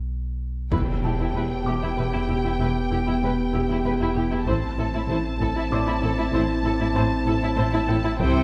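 Tense and mysterious, this suspense film score cue in 3/4 opens on a deep, punchy sub bass drone. At 0.7 s, veiled con sordino violins carry a high melody over a second violin line, muted violas, distant background cellos and double basses, and dark French horn chords, while very quiet heavy-stick taiko and a huge, dark impact add weight. From 1.0 s, a soft felt-muted upright piano adds a mellow background texture, all within a moderate scoring-stage reverb.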